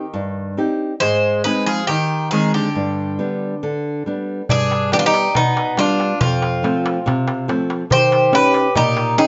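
Set in a moderate studio room with a soft top end, this short cut from a longer Greek folk piece features a bouzouki band in a tense, driving mood that gradually speeds up. Up front, a bright, picked bouzouki carries the melody on metallic double strings, some doubled at the octave. A second bouzouki plays a warm, lower supporting line beneath it. A small-sounding, fingerpicked nylon-string guitar with fresh strings sits close in the mix as accompaniment, moving through Cm, Ab, G, F and Eb7. At 4.5 seconds, as the opening phrase repeats, a metal-shell darbuka joins with crisp, close and dry strokes from hard hands, adding urgency through to the end at 9.3 seconds.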